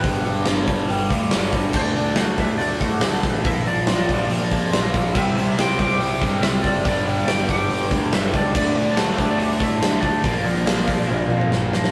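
Anthemic and powerful, this hard rock excerpt drives at 141 BPM in a straight 4/4, built on a big, up-front arena drum kit with punchy kick and bright cymbals, a double-tracked cranked stack guitar riff coated in overdrive and phaser, and a fuzzed, punchy picked bass moving over G, D, Bb and C. A twangy, slightly broken-up lead guitar carries the melody in the background, joined by a very quiet, dark octave-fuzz guitar playing a second line in a lower register, while a second, biting overdriven riff guitar slips in faintly at 5.1 seconds. The rough rehearsal-room sound sits in a moderate stone-room reverb, and a drum fill closes the passage from 11.1 seconds.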